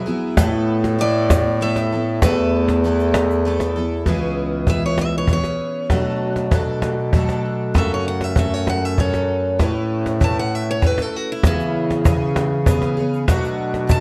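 Acoustic folk in A major at 98 BPM in 3/4, this hopeful passage, cut from a longer piece, sets a boxy, picked parlour steel-string guitar melody over a shimmering, octave-doubled twelve-string picking out chords with subtle chorus, while a punchy, classical-style bass clarinet carries the low line and a snappy cajon with snares drives from up front. A grainy egg shaker sits in the background from 0.4 to 3.4 seconds and returns at 11.4 seconds, and from 4.1 seconds the steel-string guitar takes a solo over chords moving from C#m7 through Bm7, F#m and Aadd9. Light reverb and a dark, warm production round out the sound.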